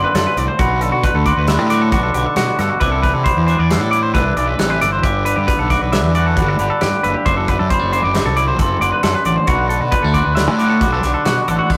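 Math rock and midwest emo at 135 BPM in 5/4, bright and playful, with a glockenspiel played with soft plastic mallets ringing out a bell-like melody over a clean electric guitar's picked, compressed arpeggios and a twangy electric guitar's fingered accompaniment, moving through chords such as D9/F#, Bm7, Cmaj9 and Gmaj7. Underneath, an overdriven fuzz bass sits up front, while a modern studio drum kit with a tight kick, medium-tuned snare, hi-hat and crash joins at 0.1 s. The sound has a rough rehearsal-room character with tube saturation and moderate reverb, and this short cut from a longer piece runs about 11.8 seconds.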